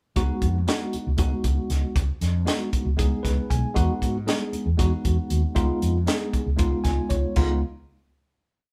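A bright, slick electric jazz fusion piece in 7/8 opens with a crisp drum kit, its high-tuned snare and punchy kick up front in a pumping small room, a dark, round fretless electric bass riding a syncopated riff, and a clean tine electric piano pushing rootless chords from Db9sus4 through Emaj9 to Db9, with piano fills at 3.0 and 6.6 seconds before the band settles on a final chord at 7.4 seconds.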